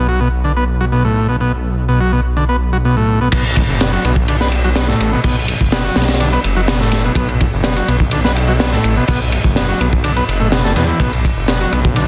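Energetic and gritty, this 125 BPM breakbeat excerpt in B minor opens with a buzzy, overdriven vintage combo organ riff with light vibrato and delay over a thick, menacing detuned saw bass, until a crunchy, saturated drum kit with dark cymbals, a high-tuned snare and a tight kick drops in up front at 3.3 seconds, all sealed in a dense, heavily limited modern master.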